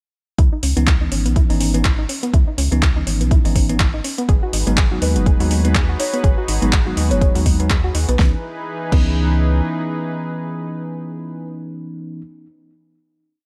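A moody deep house piece at 123 BPM in C# minor opens at 0.4 s with an up-front four-on-the-floor kick, programmed metallic hats, clap, fat snare and crash, a rubbery, nasal square bass riff with sidechain pumping, and a soft, round pluck arpeggio carrying chorus and tape echo over a swung groove that moves from C#m9 to G#m7. Bell-like tine electric piano stabs soon join, followed by a smooth, detuned analog pad with tremolo and a woody marimba melody with tape echo in the background. The drums, bass and pluck stop around 9 s, leaving the pad and electric piano to hold the final C#m9 chord, the piano ringing until 12.2 s, all with little reverb.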